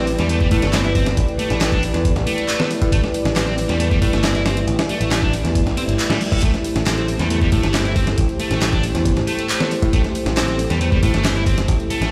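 Swaggering and energetic, this breakbeat cut moves at 137 BPM in a straight 4/4, sitting on a single Am9 chord in A minor for its twelve seconds. A dusty soul sampler-style kit drives it with a thumpy kick, a medium-tuned snare and hi-hat, its compressed, gritty, tape-warm sound dressed in studio reverb, while a punchy analog drum machine adds handclaps and hi-hat further back, re-recorded in a small room. Up front, a bright picked electric bass carries the low end with tube saturation, and a sludgy, dark, double-tracked guitar riff grinds through overdrive, tube saturation and tape echo. Beneath them a deep, moody analog pad of detuned sawtooth and triangle with a sub octave holds slow-attack chords, treated with chorus and sidechain pumping. A reverse cymbal appears in the background at 5.7 seconds, and the whole mix has the stony, reverberant feel of a big sound system in a bare room.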